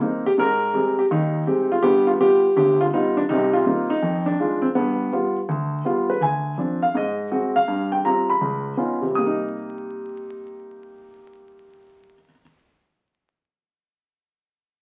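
Crackling like a very old 78 rpm record and bathed in wet studio reverb, this cool, moody solo jazz excerpt features a lone, intimate grand piano, up front with audible action noise and short sustain, swinging in 4/4 across a range from C2 to Eb6 through chords such as Abmaj7, G7, Dm7b5, Ab7 and Db9 before arriving on Cm7 at 9.1 seconds.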